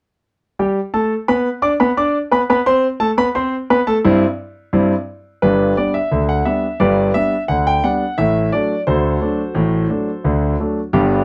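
A straight 2/4 pulse at 87 BPM drives this lively, playful ragtime excerpt in G major, tuned slightly low to A4 = 438 Hz, with a solo concert grand piano entering at 0.6 seconds and ranging from deep bass up to high treble. The piano sits up front with a clear, natural tone and long sustain, set in light reverb, as the harmony moves from G to C and then back to G before reaching D7 over A near the close at 11.2 seconds.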